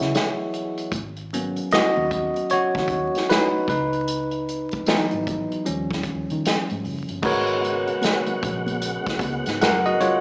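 A swung 16th-note 4/4 groove at 76 BPM carries this soulful, sultry neo-soul R&B cut, where a bright, bell-like tine electric piano takes the lead over C#m11 and G#m11 chords until 7.2 seconds, supported by a round, foam-muted electric bass and a distant, roomy acoustic drum kit played with bundle sticks, before a tonewheel organ with key click and fast rotary speaker joins at 7.2 seconds and soft, high-tuned congas ring in the background from 7.6 seconds, all heard as a live club gig through the venue's PA with vinyl crackle and a small-speaker tone.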